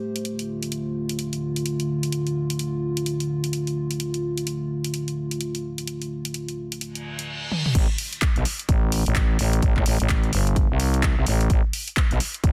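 A dense, heavily limited modern master with digital ambience frames this aggressive, swaggering bass house cut, taken from a longer piece and moving at 128 BPM in 4/4 with a 60% swing on the sixteenths. It opens on a dark analog pad holding sustained D minor chords, a moody, nasal blend of square, sawtooth and triangle waves with a sub octave, a slow attack, long release, subtle chorus and sidechain pumping. Layered, produced house drums with crash cymbal, handclaps, hi-hat and toms enter almost at once and carry through to the end. The pad ends at 7.2 seconds as an electronic reverse cymbal and a drum fill lead into the drop at 7.7 seconds, where the harmony falls away. There a growling FM bass, thick, sine-based and up front with a fast attack and tube saturation, pumps against a punchy, layered electronic kick until the cut ends at 12.5 seconds.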